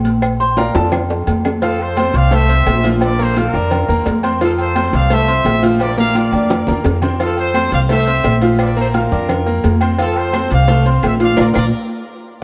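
A sunny, joyful salsa excerpt opens on thumpy gut-string upright bass, hard-handed high-tuned congas and round cowbell and bongos, with a brilliant baby grand piano taking a short solo over a drum fill while ringing agogo bells and timbales, grainy maracas and woody claves sit in the background. At 1.6 seconds a tight, clear trumpet section with light vibrato takes the melody, the claves drop out and return at 7.5 seconds, and a second drum fill arrives at 5.8 seconds before a band accent closes at 11.4 seconds. A moderate plate reverb places the whole band a little further back in the room.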